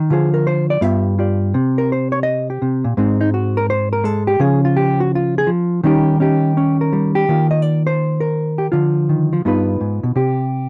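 This dry, close recording has the feel of a 1970s studio, with light reverb and a single hollow-body electric jazz guitar placed up front. The tone is dark, clean and fingered, and the mood is swinging and sophisticated. It is a short cut from a longer solo jazz piece in 4/4 at 167 BPM, with a 65% swing on the eighth notes. The guitar plays alone throughout, ranging from G2 up to Fb5. It moves through a restless chain of harmony, from Dm7b5 and G7 through Ab, Db and Eb7. At 7.3 s the music settles into Eb major with an Ebsus2, then turns through Dm and a G7b13 before landing on C5 at 10.2 s, just before the close at 10.7 s.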